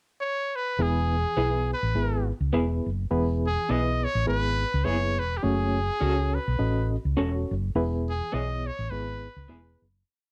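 A bright, up-front trumpet opens this joyful, danceable soul piece at 0.2 seconds, singing a motif-based, pop-style melody in song-like phrases with vibrato. At 0.8 seconds the band joins: a reedy, worn electric piano, slightly out of tune and lightly overdriven through its built-in speakers, plays close-voiced chords in quarter notes with a medium tremolo. Underneath, a round, hollow-body short-scale electric bass, played with the fingers and sitting up front, carries a melodic, syncopated line. From 1.4 seconds an electric guitar through a small old amp adds short, compressed chops on the backbeat, its slightly broken-up, lo-fi tone colored by tremolo. The eighth notes have a gentle swing, the production is dark with light reverb, and the whole piece fades out from 7.8 seconds.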